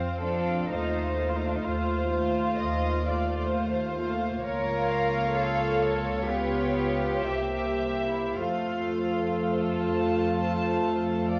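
Classical string orchestra in a serene, lyrical slow romantic movement with a rubato feel, where a floating violin section carries the melody over a lush, distant second violin line, pure, close violas, softly attacked cellos and woody double basses, all played sul tasto in a scoring-stage reverb and colored by the warbly pitch drift of worn old cassette tape, in an excerpt cut from a longer piece.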